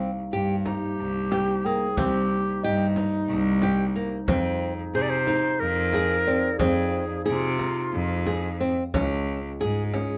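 Contemporary instrumental chamber music in a straight 7/8 at 181 BPM (eighths), this playful, restless excerpt moves from Cm7 to Fm7 and on to Db. A fingerpicked acoustic flamenco guitar plays arpeggios up front over a rich, intense bowed cello bass with vibrato, while a breathy, jazz-style clarinet enters at 0.7 s to carry the melody with scooped notes. In the background, a mellow, distant woodwind section holds sustained chords, a deep frame drum keeps the percussion, and a delicate, bell-like celesta adds sweet texture until 7.4 s, all captured with close, detailed microphones and little reverb.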